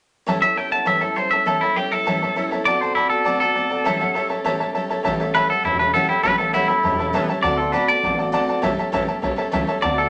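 Rollicking and retro, this rockabilly excerpt moves at a brisk 201 BPM in A mixolydian, with a clean, compressed, twangy electric guitar carrying the melody up front over A7 and D7 changes. A brilliant upright piano with short sustain and a full-bodied, picked steel-string acoustic guitar, complete with finger squeak, fill out the accompaniment from the start. At 5.1 seconds a thumpy, gut-strung pizzicato upright bass joins, all set in a wet studio reverb.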